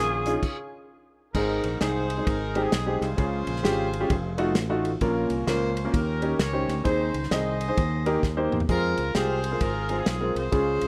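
Hopeful and uplifting, this uptempo gospel excerpt in Ab major swings along at 131 BPM, opening with a growling, raspy alto saxophone note that lasts only until 0.8 seconds alongside a clear, distant horn section carrying the melody with light vibrato and a soft attack, both bathed in plate reverb, the horns also touched by tape echo. An intimate baby grand piano with audible action noise and long sustain, a fingered electric bass sitting up front, and a soul drum kit with dark cymbals and a tight kick, entering at 0.3 seconds, drive the progression after a brief stop, with a drum fill at 8.2 seconds. The rough home demo mix has a moderate studio reverb and a pumping room sound on the kit.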